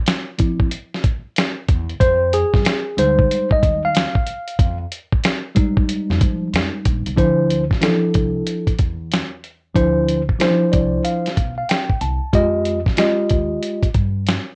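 A gritty, compressed sampler-style drum kit opens this cool, mellow jazz-hop cut from a longer piece, its thumpy kick, medium-tuned snare and hi-hat sounding up front as though re-recorded in a small room, with a light swing. A tine electric piano arrives almost at once and carries the first half as a solo; its tone is clean and direct but slightly out of tune and worn, moving between a rootless Dm9 and an Fm9. At 1.7 seconds a pizzicato upright bass joins underneath, woody and dark with the character of gut strings, sitting lower in the mix than the drums and keys. In the second half the same two chords return, and the electric piano adds a fill at 10.4 seconds. A moderate studio reverb and the warbly pitch drift of old cassette tape give the whole recording a dusty, lo-fi haze.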